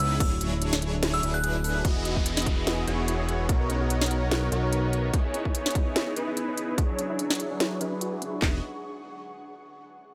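A light reverb gives this short slice of a longer future bass track a glossy, spacious sheen. It runs at 146 BPM in 4/4 with a swung, half-time feel in E lydian, and the mood is playful and euphoric. The cut opens on a drop: a crystalline FM bell melody rides over huge, detuned supersaw chords that pump against the sidechain, carry a lush chorus and delay, and move through a long filter sweep. Two up-front trap kits supply a hard-clipped kick, sharp snares, crisp hi-hats, handclaps and a crash cymbal, while a fat, saturated sawtooth bass pumps underneath. The bell melody lasts only to 1.8 s, after which a background downlifter drifts through, a very quiet, dark pluck keeps up soft arpeggios throughout, and an ethereal, mellow pad with a slow attack fades in at 2.9 s. The bass falls away at 5.1 s and returns briefly at 8.4 s, while the supersaw chords cycle through Dmaj9#11, Emaj9, Bmaj9 and C#m9.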